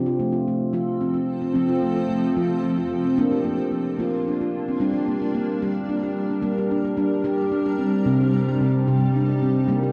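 Dark, echoing chamber reverb surrounds this gentle, hypnotic world-meditative excerpt in 6/8, where an up-front stainless steel handpan played with soft fingertips rings out mellow arpeggios from the start, and a cloudy, detuned granular pad drifts in at 1.0 seconds with blurred, evolving sustained chords over a progression moving from F through Bb and G minor to C minor.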